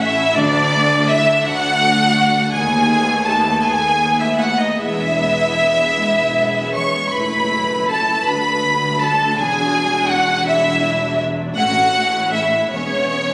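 A clear, up-front violin section carries a high second line above a softer background violin melody in this lyrical, warm slow romantic movement for string orchestra, cut from a longer piece and moving at 50-56 BPM in a rubato 6/8, while a smooth, lush viola section supplies accompaniment and a distant cello section joins a focused double bass section, both rich and bowed with vibrato, to hold the bass through chords from D to A and on to E over 13.3 seconds, all heard through a phone recording in the room with club reverb and compression.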